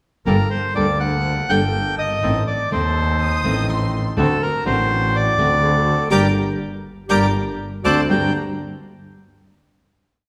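A reedy, airy bandoneon carries the melody up front, spinning motif-based period phrases in this short, tense and melancholic tango in G harmonic minor, taken at 123 BPM in 4/4 with a rubato feel. Beneath it, a full-bodied nylon-string guitar fingerpicks short tango chords while a second, darker and smoother bandoneon sits in the background with stabs in the uneven three-and-two eighth-note tango rhythm. A focused double bass, bowed by one player with vibrato, sounds clear and up front yet distant, pulsing in that same uneven tango rhythm through a harmony that moves from Gmadd9 through Adim and D7 back to G minor. A warm, intimate violin section enters at 3.2 seconds, played sul tasto with light vibrato and a soft attack, answering in the melody's rests; a mellow solo clarinet in classical style joins at 5.6 seconds with its own answering phrases from the background. After a full-band accent, the piece settles on a closing G minor chord at 8.1 seconds, bathed in the wet reverb of a recital hall.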